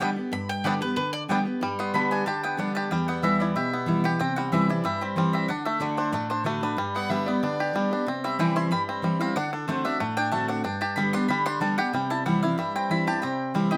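A brisk bluegrass excerpt in G major at 186 BPM opens with full-bodied, picked dreadnought guitar and a twangy banjo played with fingerpicks, both up front, while a bright, woody mandolin adds stabs on double strings. A second mandolin, warm in tone, plays a short melody from 0.3 to 1.2 s, touched with tape echo. From 1.6 s a mandolin solo runs to the close, carrying a joyful, virtuosic feel over changes through G, Em, C, D and D7. A rich, earthy fiddle with light vibrato and a smooth top enters briefly from 7.0 to 8.0 s as a bowed second line. The close, detailed recording sits in a moderate studio reverb, and the piece is cut from a longer performance, ending on a C chord.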